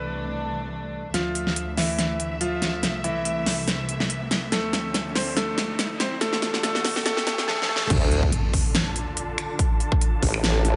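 Bathed in a lush hall reverb, this heavy, aggressive wobble dubstep excerpt at 142 BPM in a swung half-time feel and D dorian opens with a clear, vintage grand piano melody over bowed symphonic strings with vibrato, 12-bit sampler grit and sidechain pumping, while a big-room kit with a huge snare and crisp hats drives a build-up from 1.1 s beneath a background riser, until the drop at 7.9 s brings an impact, a punchy, tape-warm kick and an up-front, overdriven and chorused sawtooth wobble bass shaped by a formant filter.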